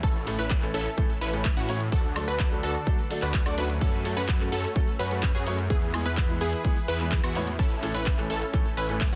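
A punchy, up-front electronic kick drives this euphoric, uplifting 127 BPM festival progressive house cut in A major, joined by an overdriven big-room kit of handclaps, hi-hat and woodblock, a thick detuned saw bass with chorus, tube saturation and sidechain pumping, a mellow supersaw stab riff and full-bodied background pluck arpeggios with 12-bit sampler grit, both pumping and trailed by digital delay, an open baby grand piano accompaniment entering at 0.3 s with the same pumping and delay, and a very quiet lush pad of sustained chords treated with chorus and phaser, all moving through A, D, F#m and E and back to A in a dry, dense, heavily limited modern master.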